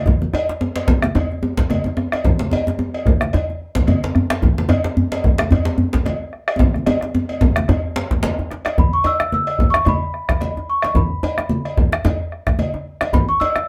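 A bell-like, delicate large celesta enters up front at 8.8 s, its sweet, ringing high melody floating over a powerful, festive West African drum ensemble at 110 BPM with a lightly swung sixteenth-note feel. Beneath it sit a dark, close bombo, thick-skinned low-tuned congas, a dry medium-tuned djembe and a distant metallic cowbell, while a second, warm and deep djembe played with soft hands runs from 0.6 s into the drum fill that begins at 6.6 s, stopping at 8.4 s. The group plays live together in a small, wet-sounding room, in a cut taken from a longer piece.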